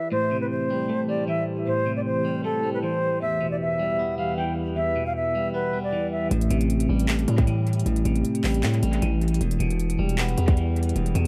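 Hip hop in a half-time trap feel, this eerie, hard-hitting passage cut from a longer piece opens with a pure, vibrato-laden concert flute melody carrying analog delay over a warbling, lo-fi tape-like pad with chorus and its own reverb, while a twangy, clean electric guitar plays echoing accompaniment from 0.1 s to the end. At 6.3 s the flute and pad stop as a distorted, aggressive 808-style bass and a trap drum kit take over, the kit bringing a hard-clipped kick, crisp hi-hats and handclaps touched with delay. The whole mix sits in an echo-heavy digital ambience.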